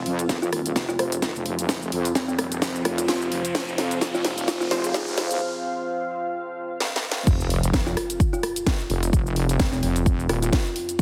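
Through a heavily compressed, radio-like sound with light digital ambience, this gritty, bouncy bass house excerpt at 129 BPM with swung 16ths builds with a background riser and sub drop, a very quiet bright granular cloud pad, a woody kalimba through tape echo, faint detuned orchestra-hit-like synth stabs and a deep, warbling ambient pad with sampler grit and sidechain pumping, then a break gives way to the drop at 7.3 seconds, all carried by a saturated sawtooth wobble bass, a punchy up-front kick and a house kit with a cracking snare.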